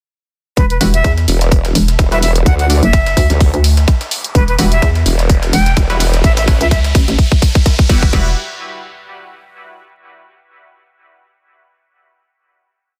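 A garage drum kit with a tight four-on-the-floor kick, woody snare and crash drives this gritty, swaggering bass house build, joined up front by a hollow, bouncy FM bass in chopped, sidechain-pumped phrases and an overdriven sawtooth wobble bass from 1.3 s, while a tape-warm electronic hi-hat, a pitched-up looped breakbeat in the background, nasal band-passed chord stabs under a filter sweep with dub echo, a breathy, reedy jazz flute with vibrato in short phrases, and a riser from 1.9 s push toward a final chord at 8.1 s.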